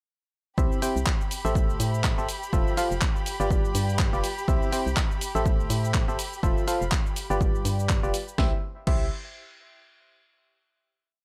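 A swung four-on-the-floor pulse drives this joyful, uplifting piano house piece, with a punchy analog kick up front and a tape-warm house kit adding programmed hats, shaker, clap, a cracking snare on the backbeat and a crash. An organ-like FM bass, hollow and dark with a fast attack, plays a dotted-rhythm line that pumps to the sidechain. Up front, a barking FM electric piano with a biting noise layer plays a rhythmic, closely voiced chord riff, thickened with chorus and analog delay and pumping as well. Behind it, a rich chamber violin section holds sustained high chords with expressive vibrato, carrying the progression around twice. The violins stop at 8.4 seconds as the piece settles on a final chord, and the dry, gritty hardware sound sits in a digital ambience.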